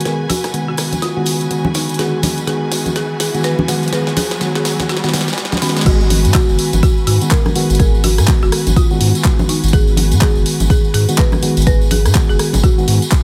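Deep house with a late-night, hypnotic mood, opening on a build-up where soft, chorused FM electric piano stabs pass through a filter sweep alongside lush distant strings, over a drum fill of fat snare, handclaps, rim clicks, hi-hats and crash, joined by a background riser, a woody marimba melody trailing dub echo, ringing close congas and a jingly far-off tambourine, until the drop at 5.9 seconds brings in an up-front deep kick and a round, dark analog bass that pumps along with the keys and strings.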